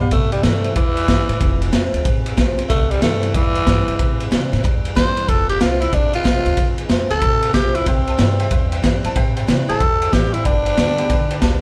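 A growling, raspy tenor saxophone takes a rowdy, rollicking solo up front over a swinging rockabilly groove, driven by a gritty, saturated garage drum kit with a boomy kick, a woody pizzicato upright bass in the background, a full-bodied picked steel-string acoustic guitar, and a bright upright piano that sounds briefly at the very start and drops back in at 7.9 seconds, all captured live in one room with light reverb.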